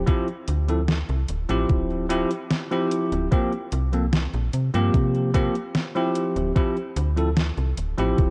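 A bell-like tine electric piano with subtle chorus and analog delay opens this hazy, nostalgic vaporwave excerpt at 74 BPM in D minor, alongside a snappy, metallic slap-like FM bass coloured by tube saturation. From 0.1 seconds a detuned 8-bit drum machine adds overdriven hi-hat and snare with studio reverb, above a thumpy electronic kick that was re-recorded in a small room and sits loudest in the mix. The chords move from Dm11 to C7sus4 at 3.3 seconds and back to Dm11, all within a dark, cassette-tape production with light reverb.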